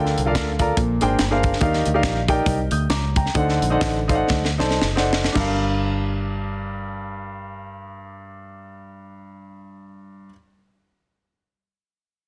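Dense and heavily limited, with light reverb and studio ambience, this short cut from an uptempo gospel piece in G minor feels soulful and solemn, swinging in 4/4 at 108-143 BPM. An up-front, warm baby grand piano plays rich chords such as Gm9, Ebmaj9 and D7b9 over a punchy, foam-muted fingered electric bass. A tight funk drum kit with a high-tuned snare and crash cymbal drives the opening; the tempo slows from 1.6 seconds, the drums play a fill from 4.3 seconds and stop at 5.5 seconds, and the piano and bass carry on together, settling onto Gm7.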